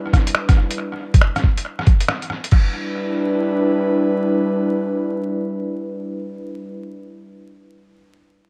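An airy, breathy pad opens this ghostly, melancholic future garage fragment on an Em7 chord in E minor, its detuned chorus shimmer roughened by 12-bit sampler grit and pumping against the beat at 138 BPM with a 16th-note swing. From 0.1 s a muffled, thumpy, pitched-down kick sits up front beside a quieter overdriven sampler kit of hi-hat, rim click, finger snaps and crash cymbal trailing tape echo; both drop out at 2.6 s. The pad then sustains on its own until 6.8 s, drifting through spring reverb and an echo-heavy mix dusted with vinyl crackle.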